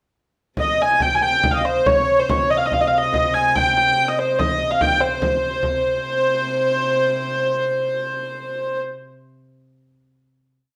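In a straight 6/8 lilt that quickens from about 93 to 103 dotted-quarter beats per minute, this brief, ancient-feeling and driving medieval dance in C Phrygian sets a dark, woody hurdy-gurdy up front with an ornamented modal melody between C5 and Ab5, over a quieter, rich, reedy gut-string viola da gamba drone ringing on C3 with light vibrato, while a deep, dry frame drum keeps an evenly spread pattern until 5.8 s, all played live in one room with a large studio reverb, before the piece settles onto a final note held from 5.6 to 8.0 s.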